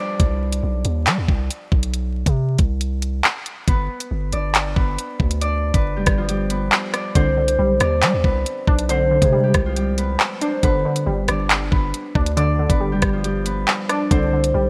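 A fingerpicked Celtic harp opens this cold, menacing drill excerpt, its bright acoustic tone ringing up front from the first moment. At 0.2 seconds a deep, sine-like 808-style bass and an electronic drill kit enter together, the bass holding long, mellow notes that decay after a fast attack while the drums drive a half-time feel with a knocking kick, tape-warm hi-hats, handclaps and rim clicks. The harmony moves between C and G chords, with suspended Csus2 colours. From 7.2 seconds a lo-fi sawtooth pluck joins as accompaniment, detuned and warbling through chorus and a filter sweep, adding a dusty, wavering texture alongside the harp. The production is bright and digital in a 1980s style, with light reverb, a digital ambience and a layer of vinyl crackle.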